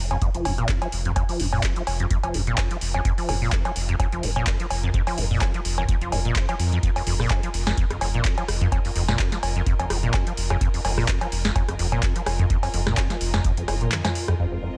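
Acid house at 127 BPM in F minor, this trippy, gritty cut from a longer piece rides a swung 16th-note feel over a single F minor chord. A round, dark analog bass anchors the low end with sidechain pumping, while a squelchy, resonant sawtooth acid riff runs on top, roughened by overdrive and colored with ensemble chorus and tape echo. The drums pair a deep, dry electronic kick with a booming analog drum machine sitting up front, its crisp snare, metallic hats, cowbell, handclaps, rim click and toms set in a small room ambience, and a drum fill arrives at 13.9 seconds. In the background, a clear symphonic string section with light vibrato fades in from the start and pumps with the sidechain. Only at 14.5 seconds does a warbling, lo-fi tape-like pad slip in with sustained chords, chorus and its own reverb, while the overall mix stays dry.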